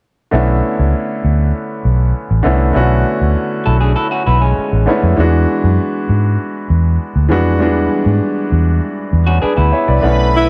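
A clear, up-front grand piano and a dark, round, foam-muted electric bass open this smooth, cinematic soul excerpt at 99 BPM in B dorian, moving from Bm11 to E9 under light studio reverb, while a slightly broken-up, lo-fi electric guitar through a small old amp adds a brief riff at 3.7 seconds and again at 9.3 seconds, lush bowed strings with portamento arrive at 10.0 seconds, and a breathy tenor saxophone touches a single scooped E4 just before the cut.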